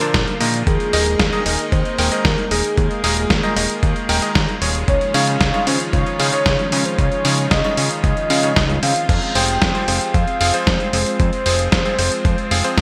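Danceable and melodramatic, this italo disco excerpt in F minor moves at 114 BPM, with a soft octave-layered synth lead carrying the melody through chorus, phaser and digital delay over a lush, detuned unison pad holding sustained chords in the background. A bright electric grand piano adds clangy, cutting stabs, while a fat analog bass with a filter pluck fills the low end beneath a gritty, compressed sampler-style drum kit, its snare up front in gated reverb, and a thumpy electronic kick. The harmony moves from Bbadd9 through Ebsus4 and Dbadd9 to Fm, set in 1980s-style digital production with light reverb.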